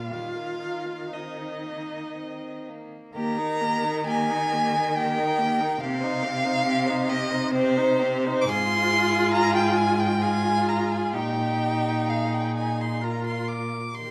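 A close violin with a soft attack, vibrato and portamento carries the second line up front alongside a smooth, even first-violin melody, a distant, expressive viola accompaniment and a rich cello bass, all bowed with vibrato in this lyrical, warm romantic string quartet movement in Eb major and 3/4 at 58-72 BPM, played with rubato in a wet recital hall and cut from a longer piece.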